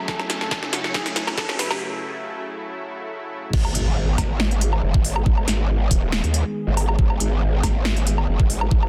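This heavy, menacing wobble dubstep excerpt at 139 BPM in a half-time feel, set in G# phrygian, opens on a build-up: a clean, picked electric guitar melody with tape echo sits in the background under a filter sweep, while a lush, thick sawtooth unison pad with chorus and sidechain pumping holds F#m7, and a background riser climbs alongside a big-room dance drum fill. The guitar stops at 1.8 seconds for a brief break, and at 3.5 seconds the drop lands on G#m with an impact and a growling, aggressive wobble bass that is detuned, saturated and formant-filtered. An up-front, overdriven knocking kick drives the drop alongside the drum kit's punchy snare, crisp hats, crash cymbal and woodblock, all in a dense, heavily limited master with light digital reverb.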